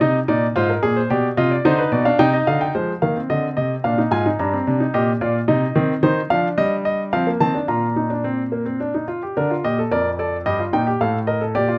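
This classical, baroque-style three-part fugue for solo piano moves in an elegant, lively triple metre with a straight feel. A warm baby grand carries every voice on its own, its natural tone and short sustain keeping the lines clear and crisp. Close, detailed microphones place the instrument up front, while a light reverb adds just a touch of space around it. The harmony begins firmly in a minor mode, then settles toward a brighter major colour from 6.0 seconds in a middle passage, before the opening material returns at 9.4 seconds. The fragment is cut from a longer piece and ends at 11.8 seconds.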